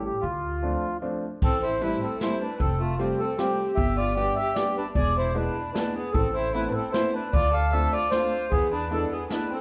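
A reedy accordion with slow beating between its reeds sits up front and carries the melody in this bittersweet, whirling musette waltz, a fragment cut from a longer piece. It moves in 3/4 at 152 BPM in A minor, over a clear, slightly detuned upright piano with long sustain and a thumpy pizzicato upright bass on gut strings. At 1.4 seconds a single bowed violin joins with a rich, focused second line full of vibrato. A jazz drum kit played with brushes comes in at the same moment, its dark cymbals, hi-hat, medium-tuned snare and boomy kick carrying a studio-room sound. The harmony moves through Dm7, Am7, Fadd9, G and E7, passing to Amadd9 before returning to Dm7 and E7. A moderate recital-hall reverb gives the ensemble the air of a church or concert hall.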